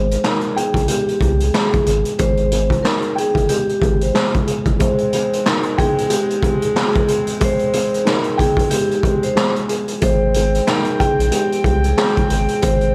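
Boom-bap hip-hop at 92 BPM with a swung 16th-note groove in Ab major, soulful and nostalgic, cut from a longer piece and resting on an Abmaj7 chord. A ringing, metallic vibraphone played with soft mallets carries the melody through tape echo over a dark, woody, boxy upright piano with a cassette tint, while a raw garage kit of boomy kick, medium-tuned snare, hi-hat and handclaps sits up front with a gritty, rolled-off top. A deep, thick sub bass with transformer saturation holds the low end until 4.8 seconds and returns at 10.0, as a distant, classical-style trumpet section with light vibrato adds stabs from 4.8 seconds, all framed by small-room ambience, vinyl crackle and a dry hardware grit.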